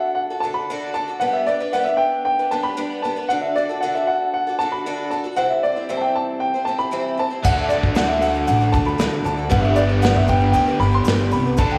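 A straight 4/4 pulse at 116 BPM drives this hopeful, open-road folk and heartland rock excerpt in G major, where a smooth, vintage grand piano carries the melody up front with slapback echo and analog delay over a shimmering, octave-doubled twelve-string acoustic guitar, until at 7.4 seconds a biting, double-tracked overdriven guitar riff, a woody pizzicato upright bass, an airy brushed drum kit and a grainy tube shaker in the background join, with a very quiet tonewheel organ adding key-clicked sustained chords through a slow rotary speaker from 7.5 seconds, the whole mix set in a lush hall reverb for a big arena sound.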